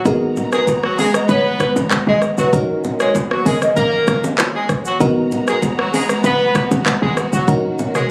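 A tight, up-front horn section playing a second line over lush, dark strings in the background opens this mellow, hypnotic afrobeats excerpt in G# minor at 97 BPM, where a hollow, woody synth lead carries the melody through chorus, phaser and digital delay until 3.8 seconds, an FM electric piano with tremolo accompanies up front on G#m9 and D#m7, a punchy 808-style bass sits beneath an electronic afro-pop kit with deep kick, smooth hats, handclaps, rim click, shaker and toms, and acoustic congas and bongos played with hard hands, all captured on a phone in the room with club reverb and compression.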